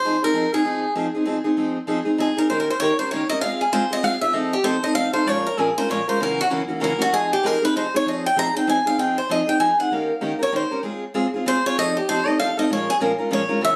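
Swinging in a brisk 3/4 at 194 BPM, this bittersweet F minor jazz passage, cut from a longer piece, pairs a boxy, bright swing-style acoustic guitar picking the melody up front with a fresh-stringed steel-string acoustic guitar that accompanies with audible finger squeak before taking a solo from 1.6 s, both captured on a phone in a studio room with light reverb and compression.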